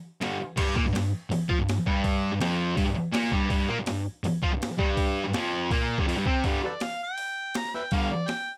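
A thick, bright fuzz guitar leads this raw, swaggering garage rock cut, its double-tracked, picked riff sitting up front from the opening moments and ranging from low F2 up to F4. Beneath it, a compressed, sampler-style boom bap kit supplies a thumpy kick, a medium-tuned snare, hi-hat and crash in a straight 4/4 drive. Kick and snare drop out briefly just before the shift at 6.4 seconds, where the music moves into a new section built around a harmonica solo. At 6.6 seconds an amplified, overdriven harmonica enters up front, its gritty, pop-style lines carrying light vibrato and tongue slaps and spanning A4 to Bb5. A light reverb gives the short clip, which is cut from a longer piece, a touch of room around its rough edges.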